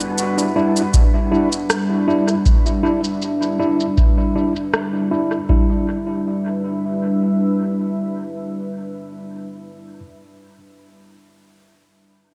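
Ambient dub at 79 BPM in E minor, meditative and spacious, built on a deep, detuned sawtooth pad that sustains an Em7 chord with chorus and long release. A worn, slightly out-of-tune tine electric piano plays lightly overdriven stabs through dub echo and a filter sweep, while a filtered electronic shaker and rim click with dub echo and a dry, up-front analog kick carry the swung groove until the drums drop out between about 5.5 and 5.7 seconds. The whole fragment sits in a moderate echo-chamber reverb, cut from a longer piece.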